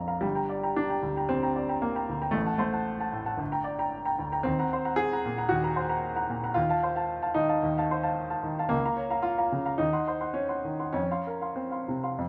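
Stormy and bittersweet, this romantic character piece for solo piano unfolds in 4/4 with a free rubato pulse between 96 and 118 BPM, a clear, natural baby grand sitting up front in light reverb with short sustain, spanning G1 to C6 as its harmony turns from G minor through diminished and half-diminished colours to a final Fsus4 at 11.0 seconds, in this brief cut from a longer piece.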